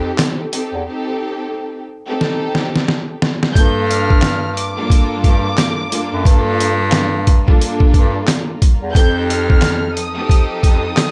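A filtered, sul tasto string section and a clear, roomy bass clarinet open this dark, moody boom-bap hip-hop excerpt in G minor at 89 BPM with a 16th-note swing, joined at 0.2 seconds by a gritty, pitched-down sampler-style drum kit of thumpy kick, snare, hi-hat and handclaps that sits up front and plays a fill from 2.2 seconds before a woody violin section melody with tape echo and a very quiet, lush string pad enter at 3.5 seconds over chords moving from F7 to Gm7 and back to F7.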